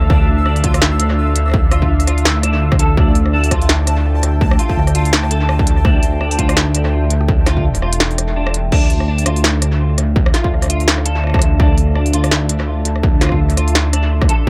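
An echo-heavy digital ambience frames this cinematic, spacious half-time drum and bass passage, cut from a longer piece. A distorted electronic kick sits up front beside a rumbling, beating detuned saw bass, while an industrial kit of clanging snare, smooth hi-hats, rim clicks and crash cymbal trails dub echo. Above them a full-bodied, moody ambient pad pumps under sidechain, a clean picked electric guitar arpeggiates through chorus and analog delay, and a pulsing triangle texture hovers in the background until 8.7 seconds, just after the kick drops out at 8.4 seconds.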